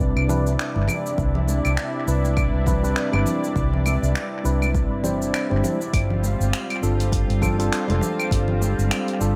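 Sunset chillout at 101 BPM in C major, relaxed and blissful, where a worn, slightly out-of-tune tine electric piano with dub echo and a filter sweep drifts over a thick, detuned pad, a round, foam-muted fingered bass up front, a tape-warm deep house kit of cabasa, claves, finger snaps and hi-hat, soft-handed congas in the background, and a deep electronic kick entering at 1.2 s, all moving from Cmaj9 to G9sus4 in a lightly reverberant, echo-heavy mix.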